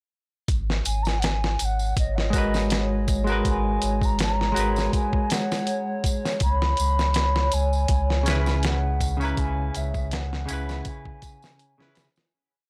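A gritty, compressed sampler-style drum kit sits up front with a thumpy kick, fat snare and hi-hat in an edited breakbeat loop, setting a smoky, brooding trip hop groove at 81 BPM in G# minor, with a loose acoustic tambourine in a small room. A deep, round dub sub bass with tube saturation anchors the low end. A clean, bright semi-hollow electric guitar adds sparse, echoing chord stabs through harmonic tremolo, while a distant, hollow wooden flute with vibrato wanders freely through tape echo. Behind them, a detuned, warbling, nostalgic pad holds a high note with chorus and reverb. The harmony moves from G#m9 to C#m7 at 6.4 seconds, and the dry, gritty piece fades out from 8.4 seconds to its end at 12.3 seconds.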